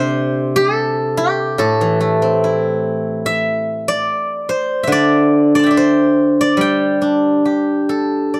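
Rubato around 72 BPM in 4/4, this short passage of Chinese traditional solo plucked strings moves in the G zhi mode with a flowing, serene mood. A lone steel-string zither, played with fingerpicks, carries the whole 8.4 seconds across a span from A2 to C6, its silvery, ringing tone sitting up front. The sound is dry and close, in the manner of a 1970s studio recording, and the clip is cut from a longer piece.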